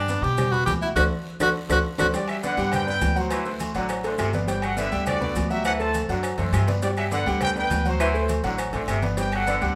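Sunny and danceable, this fast salsa excerpt in G major moves at 205 BPM in 4/4, opening with a breathy, whispered tenor saxophone solo up front over the band that plays until 2.1 seconds. A drum fill and band accent lead into a mellow, punchy trumpet section at 2.2 seconds, joined at 2.3 seconds by a vintage-toned saxophone section on a second line, while Gmaj7 and D7 alternate beneath. A clear, worn grand piano and a growly, woody pizzicato upright bass carry the accompaniment, surrounded by ringing congas, agogo bells and timbales, raspy guiro, grainy maracas, round low-tuned cowbell and very quiet claves, with the whole band playing live in a large studio with moderate reverb.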